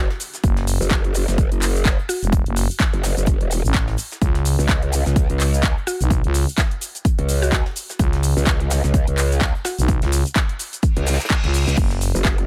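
This is a dry clip from a longer bass house track, bouncy and gritty, moving at 127 BPM in 4/4 with a 57% swing on the sixteenths, in F# minor. Two bass parts dominate up front between E1 and C#2. One is an aggressive, wobbling growl bass shaped by a formant filter, overdrive, chorus and sidechain pumping, and the other is a thick FM bass with tube saturation that also pumps with the kick. The overdriven electronic kick is punchy and layered, joined by a house drum kit of crash cymbal, handclaps, bright hi-hats and shaker that carries its own overdrive, while a very quiet acoustic brush kit adds soft hi-hat and a medium-tuned snare from a small room. A woody, round mallet-like synth pluck sits back in the mix on F#4, percussive with a short decay and coloured by chorus, vintage 12-bit sampler grit and digital delay, appearing in two short phrases. Electronic sound effects frame the clip, with a brief downlifter at the start and a reverse cymbal from 11.0 to 11.8 seconds.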